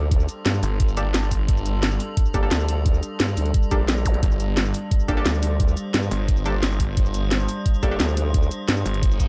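Dark, warm digital production with light reverb frames this short, tense cut from a longer dark technical drum and bass track, driven in a straight 4/4 over a G minor add-nine chord. A layered electronic kick with a knocking punch and a kit of cracking snare, bright hats and shaker sit up front, re-recorded in a small room. Beneath them a formant-sweep wobble bass churns low through chorus and tube saturation, while a snarling, detuned saw bass with a moving notch growls in from 0.6 seconds, drops out, then returns at 4.2 seconds, heavily distorted and sidechain pumping. An eerie, inharmonic FM drone with a metallic edge hangs in the background on slow-blooming chords with its own reverb and sidechain pumping, and muted, deep dub chord stabs pluck through chorus and dub echo. An electronic zap cuts in at 4.1 seconds, and a reverse cymbal at 9.1 seconds pulls the aggressive passage toward what follows.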